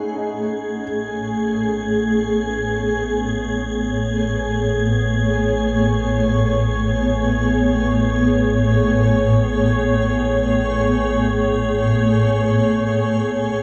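A cloudy, detuned granular pad sits up front on sustained Amaj7 harmony from the first moment, while a soft, boxy felt-muted upright piano with audible action noise briefly plays arpeggios in the background through a diffuse delay until 0.8 seconds. A deep, round sine sub bass fades in underneath while an airy, breathy wind-like tuned noise layer enters at 0.1 seconds and fades out. This weightless ambient passage in free time, cut from a longer piece, sits in a dark, warm concert-hall reverb and turns to B7sus2 at 12.9 seconds.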